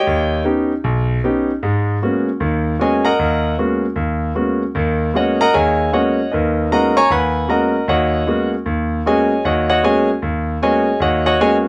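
Close, detailed miking and light reverb put a clear, natural-sounding concert grand piano up front with a deep bass as it plays solo through this intense, searching swung jazz passage in G# minor at 154 BPM, opening on an Ebaug7 before settling onto G#m11 at 1.6 seconds in a fragment cut from a longer piece.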